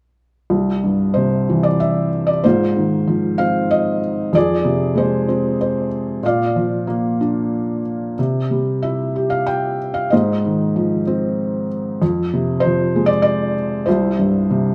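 Warm and hopeful, this lyrical classical excerpt drifts along in a gentle triple metre with a free, rubato feel. A felt-muted upright piano plays alone from 0.5 to 14.7 seconds, ranging from deep bass notes up into its upper-middle register. Its tone is soft, mellow and intimate, sitting up front in the mix with the natural clicks and thumps of the action clearly audible. The harmony moves through a calm cycle of C, A-flat sixth, F minor and B-flat before returning to C, giving the passage a tender, searching quality. A moderate recital hall reverb surrounds the instrument, and the dark production carries a faint mains hum beneath the playing.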